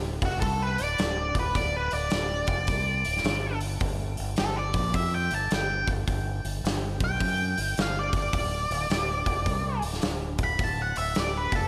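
Blues rock and southern rock in a raunchy, swaggering power-trio vein, this short cut from a longer piece rides a swung groove over D7, G7 and Gmaj7 before the harmony drops out at 8.3 seconds. A dark, octave-fuzz lead guitar solos from start to finish with slapback echo on its picked lines, while a growling fingered bass with overdrive and a polished, airy rock kit with a punchy kick and medium-tuned snare sit up front alongside it. A concert hall reverb gives the trio a big arena sound.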